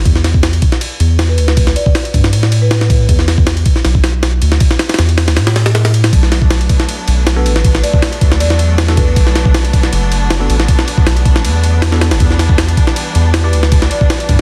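A gritty, pitched-up jungle break with a thumpy kick and high-tuned snare drives this frenetic, atmospheric drum and bass cut over a deep, round sub bass, with the kick dropping out briefly at 5.4 seconds. A mellow, woody marimba drifts in the background through dub echo, while a clear, bowed string section enters at 6.1 seconds with sustained chords and a very quiet, bell-like electric piano adds bright stabs from 7.4 seconds. The dense, heavily limited master carries a layer of vinyl crackle.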